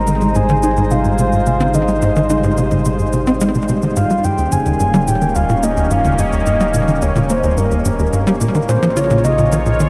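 Ambient, sequencer-driven space music in Ab major at 108 BPM in a straight 4/4, expansive and cosmic, drifting from Abmaj7 through Eb7 to Bbm7 in this short cut from a longer piece. A tight, punchy sawtooth sequencer bass riff with a plucky filter drives the texture through lush chorus and delay, beneath an airy, detuned pad with a noise layer and a resonant filter swell, and a round sine sub bass given tube saturation. Above, a soft octave-layered triangle lead sings a dark, vibrato-touched melody through chorus, shimmer reverb and delay, while analog-flavoured electronic toms and cabasa tick in the background, all bathed in a huge, wet reverb with a 7.9 s tail.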